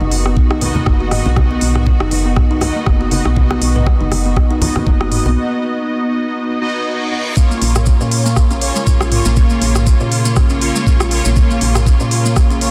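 Afro house with an earthy, hypnotic pull and a swung sixteenth-note feel, cut from a longer piece. A knocking electronic kick sits up front, joined by a produced afro-pop kit of smooth hi-hats, rim clicks and toms, while soft-handed acoustic congas sit bright in the background until they fall away as a break opens at 5.4 seconds. Over a round, woody FM bass, a plucked kalimba with a hollow-box, fingertip character plays arpeggios through delay and a low-pass filter sweep, and mellow, detuned sawtooth synth brass adds dark stabs colored by chorus, phaser and delay. A lush, clear string section holds bowed chords with vibrato, and the strings, kalimba, brass and bass all breathe with sidechain pumping. An electronic reverse cymbal rises at 6.6 seconds into the drop at 7.4 seconds, where grainy live-room maracas enter, all within a dense, heavily limited modern master.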